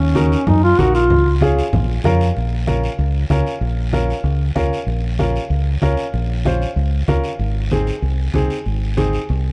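A dark, plate-reverb-washed production frames this short cut from a fiery, passionate cumbia in Bb minor, moving at a brisk 190 BPM in straight 4/4. A mellow duduk carries the melody up front, its folk-style line sung with vibrato and scooped notes, but it sounds only for the opening 1.4 seconds. A round, punchy fingered electric bass sits forward in the mix and runs the full length, grounding the harmony as it moves from Ebm7 through Db and Bbm before settling on Ab near 7.4 seconds. A bright upright piano supplies woody, intimate accompaniment with short sustain and audible action noise. Ringing, low-tuned congas struck with hard hands sit in the background, close and dry, while a raspy guiro adds a small-room scrape beneath them.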